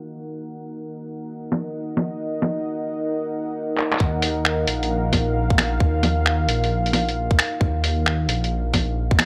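Future garage at 133 BPM in Eb minor with a swung 16th-note feel, this nocturnal, melancholic excerpt opens on a dark, mellow analog pad holding sustained chords under a filter sweep, joined at 1.5 seconds by a muffled, pitched-down sampler-style kit of bongos, finger snaps, handclaps and hi-hat, before a drum fill at 3.8 seconds brings in a tight, overdriven electronic kick and a deep, rumbling detuned saw bass with tube saturation and sidechain pumping at 4.0 seconds, all in a gritty, dry recording with light digital ambience.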